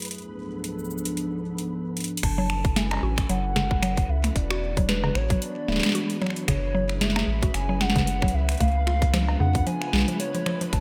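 A booming analog drum machine sets a swung 113 BPM IDM groove in 4/4 with crisp snare, metallic hats, cabasa, cowbell, finger snaps and crash under gated reverb, beside a warbling, lo-fi tape-like pad holding dark chords in F# minor and a flickering, grainy texture in the background. After a drum fill at 2.0 seconds, a tight electronic kick arrives along with a deep, round analog bass that sits up front with a filter sweep, joined by a warbling, nostalgic lead with vibrato, digital delay and shimmer reverb, while a woody, mallet-like synth pluck spins arpeggios through cassette-tape coloring. The mood is cerebral and eerie, set in bright 1980s-style digital production with light reverb, and this fragment is cut from a longer piece.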